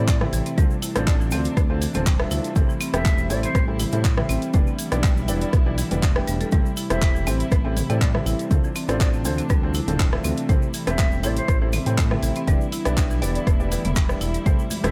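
A distant, airy concert flute melody with dub echo drifts over bowed chamber strings played sul tasto, soft felt-muted upright piano stabs and a smooth sawtooth synth bass, the strings, piano and bass all pumping against the kick in this hypnotic, spiritual afro house excerpt. A woody marimba struck with hard mallets adds bright, echoing arpeggios, while an overdriven deep house kit of handclaps, hi-hat, rim click and toms, a deep up-front electronic kick and a grainy egg shaker drive the swung groove through Am7, Dm7 and Em7 chords. Bright, high-tuned congas slip in only at 14.7 seconds, with a small room ambience around the mix.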